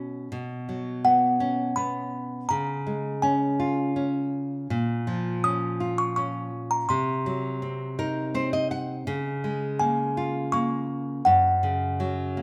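A children's lullaby in a straight 3/4 at 82 BPM, this sleepy, gentle excerpt cut from a longer piece sets a bright, up-front fingerpicked nylon-string guitar as classical accompaniment beneath a delicate, tinkling music box that carries the melody from 1.0 seconds, its small-box tone slightly out of tune. The guitar adds a fill from 7.6 to 9.1 seconds as the chords move through Bsus2, C#, A#m and Cm7b5 toward C#6 and F#5, all in a moderate recital hall reverb.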